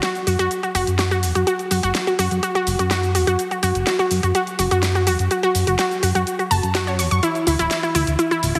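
Bittersweet and driving, this progressive house build-up at 125 BPM is cut from a longer piece and led by a bright, punchy unison pluck playing detuned sawtooth arpeggios through tape echo up front. An electronic deep house drum kit of cabasa, hi-hat and an overdriven snare runs underneath with high-pass filtering and studio reverb, while a thick analog bass with a filter sweep joins at 0.3 s. The track sits in a lush hall reverb with a heavily compressed radio sound, and a Dsus2 chord arrives at 7.2 s.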